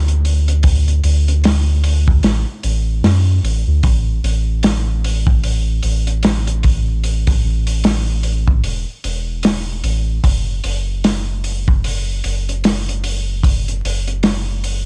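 A crunchy, gritty breakbeat kit sits up front in this brooding, dark trip hop fragment at 75 BPM, its tight kick, medium-tuned snare and hi-hat sounding saturated and smooth with a rolled-off top, swung on the sixteenths. Alongside it, equally up front, a soft dub sub bass with a round, triangle-and-square-wave tone and tube saturation holds deep, sustained notes with a fast attack. The dry sound carries a layer of vinyl crackle throughout.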